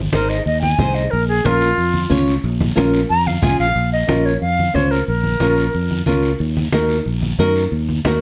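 A breathy, tongued silver concert flute leads this fiery, driving cumbia fragment, soloing through the first 3.8 seconds and dropping out at 6.0, over up-front fingerpicked flamenco guitar with audible finger squeak, a dark, round fingered electric bass, ringing low-tuned congas set close and dry in the background, and a raspy guiro, with a moderate large-studio reverb around the mix.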